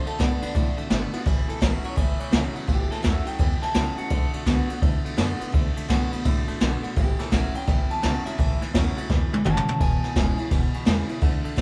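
An upbeat, retro rockabilly excerpt in A major swings at 169 BPM as a slightly broken-up, lo-fi lead guitar through a small old amp plays the melody with spring reverb over a bright picked acoustic guitar, a clean, compressed twangy guitar riff and a woody, thumpy upright bass, while an up-front brush kit with dark cymbals and a boomy kick drives the band live in one room and adds a fill at 9.1 seconds.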